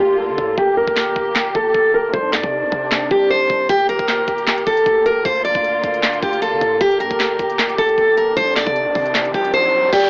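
Brooding, dark trap hip hop in G minor at 154 BPM with a half-time feel, where a bright, full-bodied picked steel-string acoustic guitar carries the melody up front through a low-pass filter, cassette tape and tape echo over distant, woody bowed strings and a deep, boomy 808-style bass in the background, while an overdriven trap kit with a knocking kick, sharp snare and crisp hats enters at 0.4 seconds, a riser builds from 8.5 seconds and the drums drop out briefly at 9.5 seconds, and a hollow clarinet-like synth lead with chorus and phaser appears at 9.9 seconds, all carrying a lo-fi home-cassette, AM-radio character in a moderate booth ambience.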